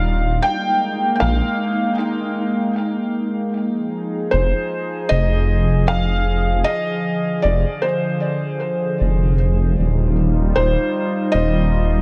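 A dark, detuned saw bass sits up front and rumbles low, its saturated unison tone beating as it sustains deep notes. Over it, a felt-muted upright piano carries the melody in a soft, intimate, vintage voice trailed by tape echo. Meanwhile, a warbling, nostalgic pad holds chords with a slow-blooming attack, chorus and its own reverb. A faint grainy texture flickers in the opening moments and stops at 2.0 s, where a brief break runs until 3.5 s. This smoky, hypnotic trip hop piece moves at 77 BPM in F dorian with a swung 16th-note feel, passing from Bb7sus4 to Fm7 and on to Ebadd9 at 9.8 s. The echo-heavy mix sits in a digital ambience, and the passage is cut from a longer piece.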